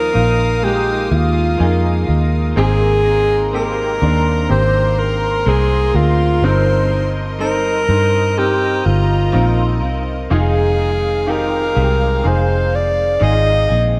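An up-front alto saxophone carries the melody with scooped notes and a jazz-inflected solo voice in this emotional, hopeful pop ballad, cut from a longer piece. Beneath it, a clear, polished baby grand piano with ensemble chorus plays accompaniment, a round, foam-muted electric bass sits dark and prominent, and a bowed string section with light vibrato and a reedy gut-string tone holds sustained chords. In the background, a compressed, clean electric guitar picks arpeggios through lush chorus and tape echo, and the mix is soaked in dreamy plate reverb.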